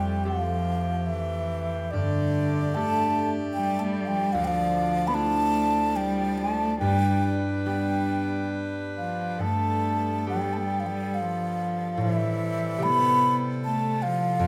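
Mournful and longing, this rubato Celtic slow air in 3/4, moving at around 68-77 BPM, sets a breathy wooden baroque flute with vibrato and tongued, unsteady phrasing up front over a dark, distant bowed cello second line, ringing fingerpicked concert harp and reedy, hollow accordion chords, all in a moderate recital hall reverb, with the harmony passing from Fadd9 through Dmadd9 to Am7 across 14.5 seconds cut from a longer piece.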